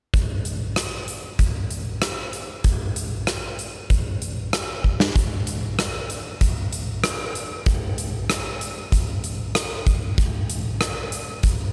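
A straight 4/4 rock beat at 96 BPM drives this euphoric, cinematic passage, cut from a longer piece. A huge arena drum kit carries everything here, playing from the start through 11.6 seconds with hi-hat, kick drum, rim click and snare drum. The kit sounds acoustic and sits up front, with a punchy kick, a medium-tuned snare and a hall character of its own, while the surrounding room stays fairly dry. A drum fill at 4.8 seconds leads into a new section at 5.2 seconds, which carries the groove to the end.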